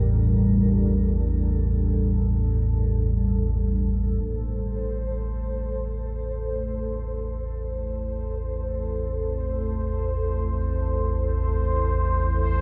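A deep, rumbling sawtooth-and-triangle drone and a warbling, detuned vintage pad with chorus and shimmer reverb open this ominous dark ambient drone in free time and A phrygian, moving from Gm/A to Am as a filter sweep begins on the drone and a resonant, bubbling texture of random filter steps enters at 4.2 seconds, all set in a huge 8.2-second reverb within a dark, warm production cut from a longer piece.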